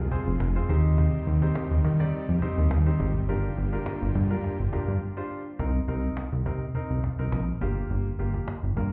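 Heard muffled through a wall with club reverb, this driving, bittersweet dance-pop excerpt in C minor at 104 BPM sets a punchy, funky analog bass pluck up front beneath a polished grand piano, woody cajon with soft hands and faint snares, and a lush, detuned supersaw pad in the background that holds sustained chords until a brief break at 5.0 seconds and drops out at 5.6 seconds as the harmony shifts from Fm, Cm/Eb and Gm7 to Cm7 and Gm7.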